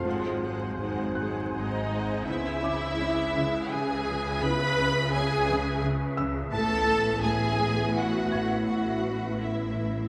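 In a slow, straight 3/4 at 83 BPM, this tense, mysterious suspense film cue in C# phrygian sets a focused, vibrato-laden violin section on the melody over a softer second violin line, a distant viola accompaniment, mellow French horn chords, a breathy wind-like noise layer and a bowed bass foundation of studio cellos and double basses, with a very quiet, close cello riff, a swarming detuned drone from 0.2 s and a felt-muted upright piano whose action noise adds intimacy in the background. A mellow clarinet traces a brief second line only until 1.9 s, and the harmony moves from G#7 to C#m7 at 2.3 s and to Asus2 at 6.5 s. The lush ensemble sits in a wet scoring-stage reverb under a layer of vinyl crackle, and this is cut from a longer piece.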